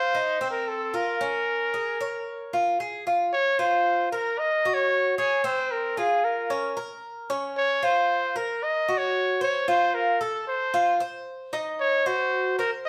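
A wet studio reverb surrounds this short latin cut from a longer piece, placing the listener a little further back in the room. The mood is sultry and warm, with a straight feel in 4/4. A clear trumpet carries the solo melody up front for the full 12.9 seconds, its pop-style tone present and touched with light vibrato. Alongside it, a Cuban tres plays picked arpeggios throughout; its acoustic double strings sound bright and metallic, with some strings doubled at the octave. The harmony opens on F7 and Bbm7, then shifts at 3.3 seconds into a new section that moves through chords such as Gb, Db and Gb6 before settling on Ebm.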